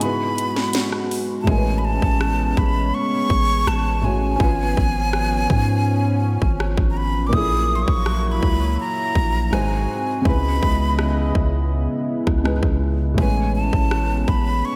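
Late-night and longing, this contemporary R&B passage, cut from a longer piece, moves in a straight 4/4 through a dreamy mix soaked in lush hall reverb. A breathy metal jazz flute carries the melody up front, its soft attack, vibrato and lifted highs giving the line an expressive pull, trailed by delay. Beneath it, a felt-muted upright piano plays intimate, natural-sounding accompaniment with audible action noise and a subtle chorus, while a shimmering, retro pulse-width pad holds sustained chords with slow attack and long release. The trap kit is electronic and produced, with a hard-clipped kick, sharp snare, rim click and metallic hats, and after an opening break the hi-hats are muted from 1.5 to 13.2 seconds. A deep, mellow 808-style bass with a sine tone enters at 1.5 seconds, its long, decaying notes sitting prominently in the mix. The chords drift from G#m7 through Amaj9, C#7/G#, F#7/A# and G#7 to C#m7 before returning to Amaj9.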